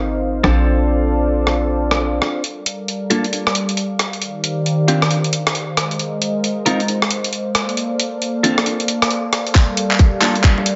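UK garage in a skippy, late-night two-step groove at 135 BPM in G minor, this dreamy, reverb-soaked cut opens with a smooth, warbling analog pad holding sustained chords from Bbmaj9 through Gm9, Ebmaj13 and Ab6, while a clean electric guitar adds picked stabs through a low-pass filter and analog delay. A hollow, bouncy FM bass knocks only until 2.2 seconds, and a gritty, compressed breakbeat kit of congas, handclaps, hi-hat and rim click carries the swung shuffle. From 2.4 seconds, filter sweeps on the guitar and pad drive a build-up, and an overdriven, tight electronic kick bursts up front in a drum fill at 9.6 seconds.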